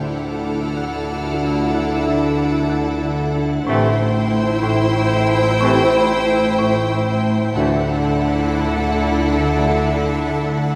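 A wet scoring-stage reverb surrounds this tense, uneasy fragment of a suspense film score in 3/4, where a pure, floating violin section carries the melody over a darker violin line in the background and an intimate, close viola section, all bowed sul tasto with soft attacks. A smooth marimba riff played with medium hard mallets sits most forward, joined by cello and double bass sections on the bass, very quiet horn and bright trombone sections holding chords until 9.8 s, a detuned organ-like pad with chorus and its own reverb, and a mellow, ringing fingerpicked harp. A clear, high violin section adds texture until 7.2 s as the harmony moves from Dadd9 to Am7 and back.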